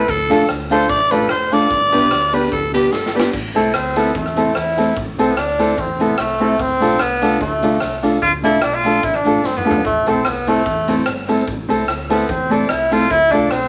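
A raspy alto saxophone opens this mischievous, energetic ska excerpt in A minor at 148 BPM, its edgy, scooped lead riding over a lightly swung 4/4 groove with a mellow, clean electric guitar soaked in spring reverb and dark, woody upright piano stabs. Underneath, a round, punchy hollow-body bass holds the low end while a raw garage drum kit, saturated and gritty with a punchy kick and rolled-off top, pumps in a bright stone room; a grainy cabasa sits very quietly beside it for the opening seconds. After a drum fill, the alto gives way to a tenor saxophone, which enters at 3.6 seconds with light vibrato, sounding distant and roomy yet up front. The tenor carries the rest of the passage through chords moving from Am to Dm and back, with another drum fill near 9.4 seconds. A small, wet room reverb wraps the ensemble, and the piece is cut off at 13.7 seconds.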